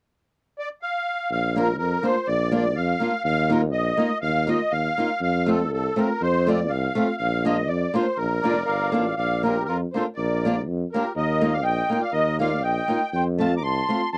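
A reedy musette accordion carries the melody from 0.6 seconds, its shimmering, vintage tone sitting up front in this bouncy, festive alpine folk excerpt cut from a longer piece. In 2/4 with a light swing and a rubato feel, a clear tuba soon anchors the bass in a classical style, and a picked, ladder-braced acoustic guitar with old strings adds woody, boxy accompaniment close behind. The harmony moves through Bb, Ebsus2 and F, and the opening passage comes around again at 9.2 seconds. At 8.4 seconds a dark trumpet enters with a second line, played in a classical style with light vibrato and a smooth top, sitting lower in the mix than the others. The sound is that of a dry, close 1970s-style studio recording with light reverb.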